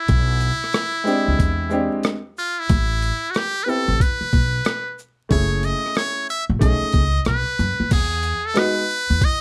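Relaxed and easygoing, this jazz-hop cut from a longer hip hop piece rides a swung 16th-note groove in 4/4. A muted trumpet carries the melody from the very start, its metal mute giving a buzzy, thin, brilliant tone, played forcefully in a jazz style with light vibrato, scooped notes and a punchy, close-miked presence up front. An upright bass plucked pizzicato on steel strings sits up front with a woody, acoustic sound, while a gritty, compressed boom bap drum kit, pitched down like a sampler, supplies a thumpy kick, hi-hat, rim clicks, shaker and crash. A clear, smooth upright piano with a vintage character enters at 1.0 seconds to comp through lush changes such as Bmadd11, E7alt, Am9 and B13 before resolving to Emaj9 at 7.9 seconds. Light reverb and a layer of vinyl crackle lend the whole a dusty, warm patina.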